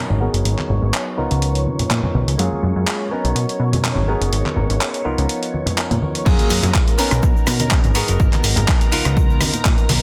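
Funky and feel-good, this filtered disco house cut moves at 124 BPM in F# major with a light swing, as a punchy, up-front analog bass, a stringy clav run through a phaser, a bright picked clean guitar riff and a lush, gritty string machine pump together under a filter sweep over a G#m9, C#13, F#maj9, Bmaj9 progression. Ringing congas and egg shaker sit in the background beside a dusty, compressed sampler-style kit of handclaps, hi-hat, rim clicks and crash. At 6.3 seconds the drop lands with a tape-warm electronic kick pushed up front, all inside light reverb and a dense, heavily limited master.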